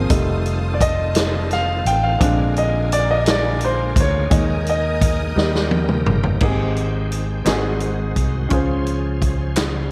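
Slow gospel in 6/8 at 57 BPM in Ab major, uplifting and reverent, cut from a longer piece: a clear, polished grand piano solos up front through the opening section over a round, dark fretless bass with subtle chorus and a punchy, mid-forward drum kit. Behind them, a bright, shouting tonewheel organ with fast rotary speaker, light overdrive and chorus vibrato holds sustained chords, joined by a lush, woody string section until 6.4 seconds, where a drum fill starting at 5.4 seconds leads into a passage moving from Abmaj7 to Dbmaj7. Hollow group handclaps enter in the background at 7.5 seconds, and the whole piece sits in light studio reverb.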